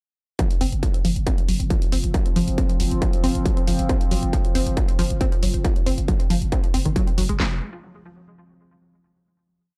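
The recording is dry and gritty, with a hardware edge and little reverb, and it plays as a complete, relentless piece of driving peak-time techno in straight 4/4. From 0.4 seconds a distorted, up-front drum kit hammers a four-on-the-floor kick under a cracking snare and handclaps, while overdriven analog hi-hats tick closed and open around the backbeat. A growling, buzzy 808-style bass on F1, saturated and low-pass filtered, fills the space between kicks with a low rumble and pumps against the kick. The lead is a lush, punchy unison pluck built from detuned sawtooth layers with a noise layer and a moving notch, repeating a six-step loop that drifts against the bar through overdrive and tape echo, and a filter sweep runs across a synth arpeggio sound from 0.4 to 7.4 seconds. Beneath it, a vintage analog drone enters at 1.6 seconds, warbling and mellow with pulse-width movement and chorus. 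The intense groove holds until 7.4 seconds, when it gives way to a brief closing moment.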